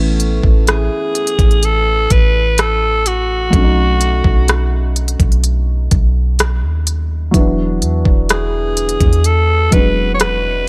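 A raspy alto saxophone carries the melody in this short excerpt of contemporary R&B. It enters at 0.7 seconds with a gritty, vibrato-laced tone, a smooth top end and a touch of digital delay, sitting up front as a pop-style solo voice. Beneath it, a felt-muted upright piano supplies soft, boxy, intimate accompaniment, with a soft 808-style bass adding deep, round, decaying low notes from the start. A smooth R&B drum kit of knocking kick, smooth hi-hats and rim click comes in at 0.2 seconds with an electronic, tape-tinged feel. The tempo is a slow, straight 63 BPM in 4/4 and A major, moving through Amaj7, B7 and E7 in a dry, close sound that feels smooth and tender.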